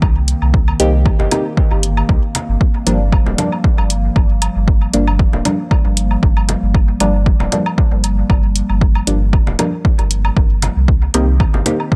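An overdriven, punchy analog kick sits up front in this hypnotic, hazy dub techno excerpt, underpinned by a round, deep sine sub bass that pumps with sidechain. A warbly, lo-fi pad drifts beneath in slow-attack, sustained chords, dark and nostalgic through chorus and its own reverb. A soft, nasal chord stab enters at 0.8 seconds, coloured by phaser, cassette tape grit and dub echo. Layered electronic hi-hats and overdriven woodblock and congas, re-recorded in a small room, carry a lightly swung feel, with the percussion sent through dub echo. Near the close, at 11.1 seconds, a crisp, bright wavetable stab with unison and ring modulation flickers briefly in the background, just after the harmony, having moved from Cm7 to Gm7, returns to Cm7 in a dry, close mix.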